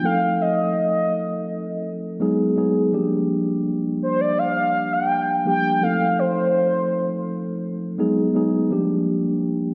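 In a straight 4/4 at 83 BPM, this sensual, moody R&B fragment cut from a longer piece settles into an unhurried G minor groove, tuned slightly sharp at A4 = 443 Hz. A mellow tine electric piano carries the accompaniment throughout, sitting clean, direct and up front as it moves through F7, Abm7 and Gm7, a cycle that comes around twice. Over it, a horn-like synth lead sings the melody between C5 and G5, its round, detuned sawtooth tone shaped by a soft attack, sustained notes, a filter sweep, vibrato and portamento, with chorus and delay adding shimmer. The lead drops out at 7.6 s, leaving the electric piano alone until the close at 9.7 s. A lush hall reverb with a 2.0-second tail bathes the whole mix, giving it a dreamy glow.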